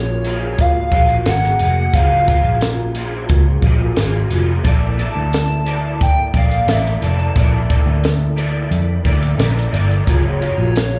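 A hollow, woody synth lead with a clarinet-like tone carries the melody between Db5 and A5 across this 11-second cut from a longer indie and bedroom pop piece, its soft, sustained voice thickened by analog chorus, vibrato, plate reverb, slapback echo and delay. Beneath it, an electric guitar through a small old amp plays dark, slightly broken-up, lo-fi accompaniment, colored by ensemble chorus, a warbly pitch drift, plate reverb and slapback echo. A vintage muted picked bass sits up front with a round, foam-muted punch, while a compact cocktail drum kit keeps a straight 4/4 at 88 BPM with a dry, high-tuned snare, punchy kick and hi-hat. A jingly tambourine enters at 1.3 seconds in the background. The mood is laid-back and hazy, the harmony moving from Gbmaj9 to Bbmaj7#11 at 4.7 seconds and back to Gbmaj9 at 10.1 seconds, all heard as a live gig through the venue's PA with club reverb.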